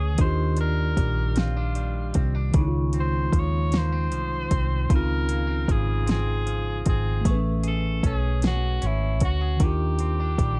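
A bright, punchy tenor saxophone with vibrato carries the melody in this slow, sensual R&B excerpt in six-eight at 51 BPM in Db major. A mellow tine electric piano and a twangy, slightly broken-up electric guitar fill out the middle, while a round, foam-muted electric bass and an up-front, overdriven electronic drum kit with a soft kick, fat snare and metallic hats, entering at 0.2 seconds, anchor the groove. Lush major-ninth chords move from Ebmaj9 through Dbmaj9 and Amaj9 and back, wrapped in digital ambience and a dark, warm production.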